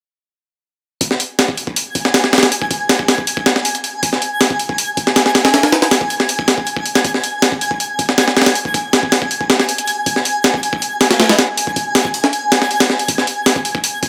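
A straight 4/4 drum and bass groove at 159 BPM drives this frenetic, nostalgic jungle excerpt, carried by a gritty, pitched-up breakbeat kit of hi-hat, thumpy kick and medium-tuned snare that sits compressed and up front with a tape-warm, sampler-style character. At 1.9 seconds a twinkling granular texture enters on a sustained Ab5, its slow attack, long release and octave-up shimmer giving a bright, sparkling FM glow bathed in its own reverb. The whole excerpt is set in a moderately lush hall with a 2.2-second decay.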